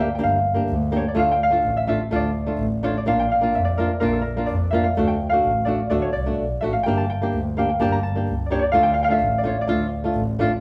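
Klezmer in D harmonic minor at 127 BPM in a straight 2/4, soulful and bittersweet, cut from a longer piece, where a mellow, ringing thumb-plucked concert harp carries the melody over a boxy, thumb-plucked flamenco guitar with audible finger squeak and a dark, woody bowed double bass with vibrato entering at 0.2 s, all three sitting up front in a wet large studio reverb as a band playing live in one room, moving through Gm, Dm, Bb and D.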